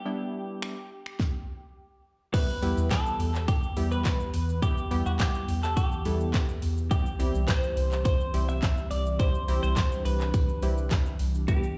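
A straight 4/4 pulse from an electronic, up-front pop drum kit, with a punchy kick, fat snare, metallic hats, finger snaps, handclaps, shaker and crash, drives this carefree, euphoric dance-pop fragment, joined at 2.6 s by a deep, round sine sub bass with sidechain pumping. A bright, twangy, clean twelve-string electric guitar carries the melody through spring reverb and digital delay, over a funky sawtooth polysynth comp with chorus, filter sweeps and its own sidechain pumping. From 3.1 s a glassy, warbling vintage FM pad with ensemble chorus sits in the background, a very quiet jingly tambourine enters at 2.3 s, and the mix has the sound of a big system playing in a bare room as the chords move from Em to C.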